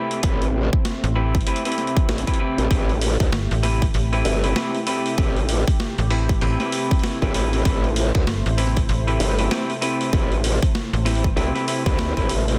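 Swaggering and gritty, this glitch hop excerpt at 97 BPM with a 16th-note swing sits on an A minor seventh chord, where a punchy, layered electronic kick and a growling, wobbling bass lead up front, a snappy, metallic FM slap bass joins at 1.0 seconds, a compressed sampler-style kit adds hi-hat and a high-tuned snare, a slightly broken-up lo-fi guitar stabs through tape echo and sidechain pumping, and a smooth, detuned sawtooth pad holds sustained chords in the background, all in a dense, heavily limited mix with little reverb.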